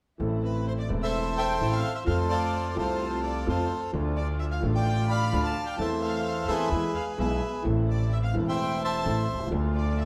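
A passionate, sultry tango fragment opens at 0.2 seconds, played rubato, with a boxy, intimate grand piano accompanying, a dark, lush studio string section adding stabs in the background, and a woody, thumpy pizzicato upright bass up front. A period-style chamber violin section with light vibrato enters at 0.4 seconds on a second line behind them, and a close-miked, reedy bandoneon carries the melody up front from 0.5 seconds. The band plays live in one room, wrapped in a generous large-studio reverb, as the chords move from Am through F, Dm and E back to Am and Dm.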